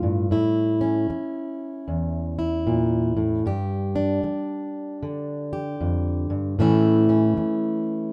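A fingerpicked, plugged-in steel-string acoustic guitar carries this short folk excerpt alone, its jumbo body giving a full-bodied, up-front tone. The mood is wistful and reflective, moving at 77 BPM in 4/4 with a swung eighth-note feel. The guitar spans from E2 up to G4, and its tuning sits slightly below standard pitch at A4 = 438 Hz. The harmony rests on A, shifts to G5 at 3.5 seconds, and returns to A at 6.6 seconds. A light reverb surrounds the instrument, and the clip, cut from a longer piece, runs just over eight seconds.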